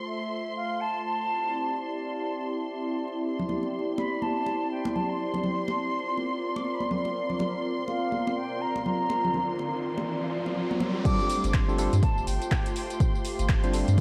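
Soaked in lush hall reverb and dusted with vinyl crackle, this dreamy, hypnotic deep house excerpt moves with a smooth, swung feel. A detuned, warbling analog pad holds sustained suspended chords under a filter sweep, pumping against the sidechain, while a muted violin section adds a veiled, bowed haze high above. An airy concert flute sings an expressive, distant melody through a diffuse ambient delay, and bright, hard-hit congas from a small room join in at 3.4 seconds. An electronic riser starts at 8.6 seconds and leads into the drop at 11.1 seconds. There, a tine electric piano plays clean stabs roughened by 12-bit sampler grit and tape echo, a punchy, up-front kick lands with a layered kit of metallic hi-hats, handclaps, tambourine and crash, and a deep, sine-toned sub bass with its octave follows moments later.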